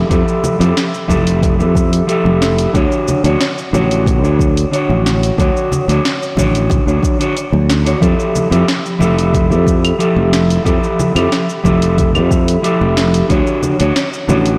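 Sunset chillout in 4/4 with a straight feel, this blissful, warm excerpt is cut from a longer piece. A mellow, dark, clean electric guitar sits up front, fingered through a low-pass filter and digital delay as it carries the accompaniment over chords moving between Fmaj9 and Dmaj7. Beneath it, a sustaining fretless electric bass with a growly, direct-and-amped tone holds down the low end. From 0.1 s, an electronic soft kick and a smooth R&B kit with a sharp snare, hi-hat, claves and shaker play, both overdriven and re-recorded in a small room, with the kick dropping out at 13.4 s. Very quiet congas, close and dry with hard hands, add a touch of acoustic percussion, while the whole mix sits in a wet concert hall reverb and has a blown-out, overdriven sound.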